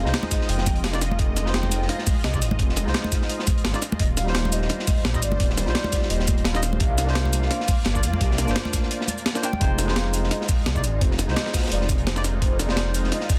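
A menacing, detuned saw bass with a filter swell sits up front in this melancholic, lush liquid drum and bass passage at 171 BPM in F dorian, driven by a gritty, thumpy electronic kick and a compressed, sampler-style breakbeat kit with shaker, while a darker, saturated second breakbeat kit with filtered hats and snare sits behind them. Above, a bright, barky tine electric piano with delay plays over a thick unison pad with chorus, phaser and sidechain pumping, and a hollow, woody clarinet-like synth lead with vibrato carries the soft melody. The chords move from Fm7 through Eb69 and C9sus4, a brief break arrives at 8.9 s, and the close, dry congas drop out at 9.6 s as the drop returns on Fm7 in a dense, heavily limited mix.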